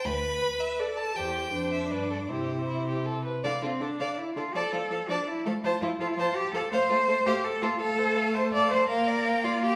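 A quick, cheerful classical-period string quartet movement at 164 BPM in 3/4 with a lively, rubato feel, cut from a longer piece, moving from C major into D minor at 3.4 s. A violin carries the focused, smooth-topped melody with vibrato, while a second violin enters at 0.4 s with an expressive line full of portamento. Beneath them a rich viola supplies accompaniment and a clear, even cello holds the bass from 0.1 s, all set in a reverberant recital hall.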